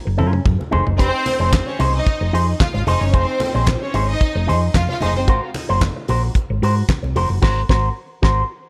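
Set in a small room ambience, this short disco cut from a longer piece moves at 112 BPM in a straight 4/4 with a danceable, joyful lift. A damped 70s drum kit sits up front, dry and acoustic, with a fat snare, tight kick, dark cymbals, handclaps, hi-hat and toms, opening with a drum fill. A hollow-body short-scale fingered electric bass, round and amped, anchors the low end alongside a clean, picked electric guitar whose envelope filter and compression give it a twangy bite. Low-tuned congas with hard hands ring from a distant large room in the background. A lush, bowed studio string section with vibrato and tape echo enters at 1.0 seconds and drops out at 5.3 seconds, as the harmony moves from Gbmaj7 through Fm7 to Ab9 before a band accent at 7.4 seconds.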